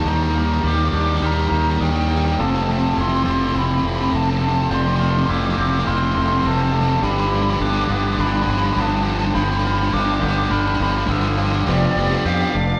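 Post-rock at 103 BPM with a soaring, hopeful mood, this short excerpt from a longer piece builds from the start until 11.7 seconds over Ebmaj7, Fmaj7 and G7 chords before a brief closing section on G7/F. A bright, biting overdriven lead guitar carries the melody over a compressed, up-front overdriven guitar riff and a punchy fuzz fingered bass, while a clean, twangy electric guitar plays arpeggios in the background. A very quiet pedal steel guitar adds fingerpicked slide chords with volume swells, and a dark, bell-like glockenspiel struck with soft plastic mallets rings out arpeggios, all heard as a band playing live in one room with a wet studio reverb.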